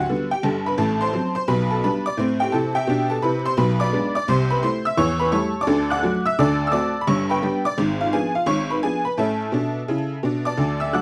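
Playful and swinging, this brief cut from a longer stride piano piece races along at 172 BPM in 4/4 with a 64% swing on the eighth notes, its tuning sitting slightly below standard pitch at A4 = 436 Hz. A lone tack piano carries the whole 11 seconds, its metallic, jangly, boxy voice placed up front and spanning G1 to F#6 as it moves through busy changes from G and Am7 to D7 and diminished passing chords before landing on A. Close, detailed microphones catch its percussive vintage bite under light reverb, with vinyl crackle adding an aged patina.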